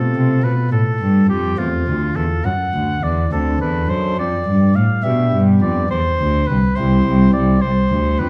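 Serene and radiant, this baroque-style sonata movement in C major moves at 70 BPM in a straight 12/8, with a clear oboe singing the melody with light vibrato over a chamber organ principal stop whose smooth voicing carries a chiff. A rich, reedy cello, bowed with period gut-string tone, sits up front on the bass line from 0.1 s, as the harmony passes from F through D7 and G7/F to C. The trio rings in a recital hall's reverb in this short passage cut from a longer piece.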